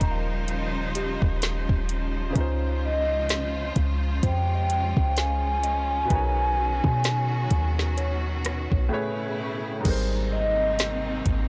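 A dry, blown-out and overdriven sound colours this short cut from a dreamy, romantic contemporary R&B piece in Ab major, moving at a slow 64 BPM in 4/4 with a swung sixteenth-note feel over chords drifting from Eb13 through Dbmaj7, Bmaj7 and Amaj9 to Abmaj9. A hollow, woody clarinet-like synth lead carries the melody with warbling vibrato, chorus and digital delay, while a warm grand piano and a clear, focused bowed string section with sidechain pumping hold up the harmony. Up front sit a deep, boomy 808-style bass and a tape-tinged electronic drum kit with soft kick, woody snare with soft clipping, metallic hats, rim clicks and crash, as a pure FM synth bell glimmers in the background through chorus, phaser and delay.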